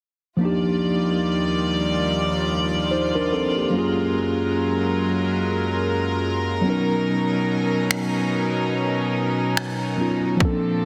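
This contemporary R&B piece drifts at 72 BPM in 4/4, with a lazy sixteenth-note swing and a dreamy, smooth mood. A mellow tine electric piano carries the accompaniment from 0.4 seconds, sitting up front with a warm, clean tone as if heard through its own built-in speakers. Alongside it, a studio string section holds soft-attacked, bowed chords played sul tasto, giving a pure, floating ensemble sound, with sidechain pumping that makes the sustained chords breathe. The harmony moves through Ebmaj9, Gbmaj9 and Bmaj9, lending a rich colour. At 7.9 seconds an electronic trap drum kit slips in with finger snaps and a hard-clipped kick, its snare softly clipped. A moderate, lush hall reverb and a dense, heavily limited modern master frame this short section, which is cut from a longer piece and ends at 10.8 seconds.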